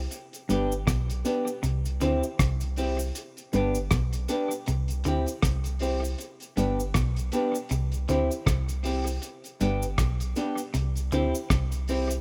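Roots reggae at 79 BPM in G major, this laid-back, uplifting clip from a longer piece swings gently on the sixteenths while the chords alternate between G and C. A soft, round dub sub bass sits deep and up front from the start, joined at 0.1 seconds by a cloth-damped, thuddy drum kit of hi-hat, kick drum and rim click, its muffled, gritty sound carrying a dub echo and a tight kick. A cabasa rides quietly in the background throughout. At 0.5 seconds two clean, picked semi-hollow electric guitars come in: one plays a low riff, while the other supplies higher accompaniment through tape echo. A dark, woody upright piano adds boxy stabs in the middle register. The whole thing has the rough, lightly reverberant feel of a home demo mix.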